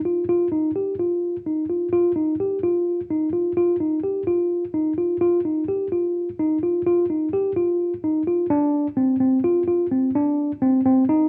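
Hopeful and shimmering, this brief contemporary instrumental passage is cut from a longer piece and moves at 256 BPM counted in eighths, in a straight 7/8. A solo tine electric piano carries it alone from 0.1 s to 11.3 s, staying within the narrow span of C4 to G4. Its tone is worn and slightly out of tune, lightly overdriven through a combo amp, which gives the keys a gritty edge. The instrument sits up front, captured by close, detailed microphones with a light reverb around it. The opening idea gives way to a new section at 8.5 s, which runs until the fragment ends.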